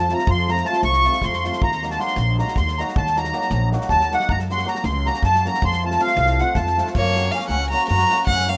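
This rough home-demo mix sits in a studio reverb, a short cut from a longer Balkan wedding-band tune in an asymmetric 7/8 with a straight feel and a virtuosic yet bittersweet mood. The accordion leads off with a solo up front, its reedy, sweet, vintage tone band-limited and coloured by light tremolo tuning and tape echo. Beneath it a shimmering, ringing hammered dulcimer fills in the accompaniment, while a woody, growly pizzicato upright bass on steel strings thumps out the low end. A loose indie drum kit with a tight kick and a medium-tuned snare comes in at 0.1 seconds, its small-room sound rolled off at the top. At 7.0 seconds the accordion solo gives way to a new section as a single rich violin takes the melody close and intimate, bowed sul tasto with an airy bow, soft attack and light vibrato, while the harmony, having moved from F through E-flat minor and G-flat and back to F, lands on G-flat.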